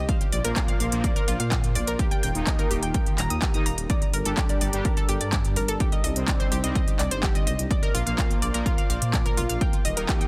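Melodic techno at 126 BPM in 4/4, driving and dark, cut from a longer piece and moving through Bb, Eb, Gmadd9 and Cmadd9. An overdriven, up-front kick and a layered kit of handclaps and smooth hi-hats push alongside a deep, rumbling detuned saw bass that pumps with sidechain, while a round, vintage analog pluck spins chorused, delayed arpeggios over the top. Bold, brassy synth stabs enter at 0.4 seconds with vibrato and filter sweeps, and a lush, full-bodied unison pad holds slow-attack chords in the background, all sitting in a digital ambience with a dense, heavily limited modern master.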